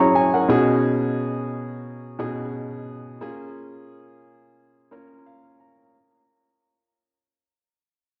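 A solo grand piano opens this short soul fragment, its warm, up-front tone colored by cassette tape and tape echo as it moves from a B6 chord to A#m7 at an unhurried 88 BPM with a light sixteenth-note swing. The mood is silky and bittersweet, with the piano tuned slightly below standard pitch and spanning from low B2 to high C#6. A piano fill arrives at 4.6 seconds as the whole passage fades out, wrapped in light studio reverb and the soft grain of a home cassette recording.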